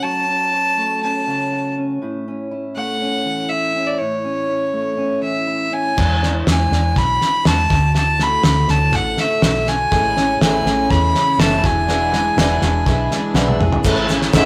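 An earthy, up-front fiddle carries the melody from the opening of this nostalgic yet hopeful indie folk excerpt, which moves at 122 BPM in a straight 4/4 in A major. Beneath it a fingerpicked steel-string acoustic guitar accompanies over chords that drift from F#m to A, and at 6.0 seconds a round, dark fingered electric bass and a cloth-damped, thuddy drum kit with a fat snare, tight kick and dark cymbals join to build the arrangement. A picked twelve-string acoustic guitar arrives at 9.9 seconds, its octave-doubled fresh strings shimmering with audible finger squeak, and a drum fill leads into the closing Amaj7 chord. In the final moments a very quiet, distant chamber string section floats in with sustained chords, a grainy tube shaker sits in the background, and a nasal, straight-muted French horn sounds a single low note. The whole thing has the rough feel of a rehearsal-room recording, with a moderate stone-room reverb and gritty saturation on the drums.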